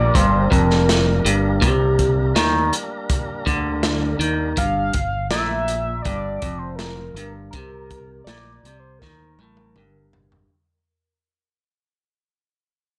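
Psychedelic rock in G minor at 81 BPM, hypnotic and mysterious, this short cut from a longer piece rests on a single G minor chord while a clean, phaser-treated electric guitar riff and a round, dark fingered bass hold the low end under a crunchy, saturated breakbeat kit with a tight kick and rolled-off top. A screaming, guitar-like overdriven synth lead carries the melody with chorus, vibrato and tape echo, and a lightly overdriven tonewheel organ spinning through a fast rotary speaker holds sustained chords until 4.5 seconds. Light reverb surrounds the band as the whole passage fades out, and a drum fill arrives at 9.0 seconds.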